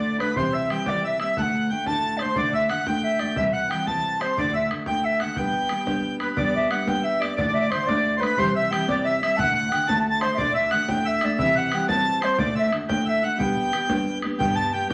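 Celtic folk jig in 6/8 with a cheerful, bright mood, cut from a longer piece, where an airy wooden flute with vibrato carries the melody from a distance while a reedy, up-front accordion plays a second line in the same register. A picked steel-string acoustic guitar gives full-bodied accompaniment through a C, D and G progression, and a damped, tight bodhran with a vintage, band-limited tone enters at 0.2 seconds. A dark, bowed cello arrives only at 14.4 seconds on a single low G, all set in a wet studio reverb.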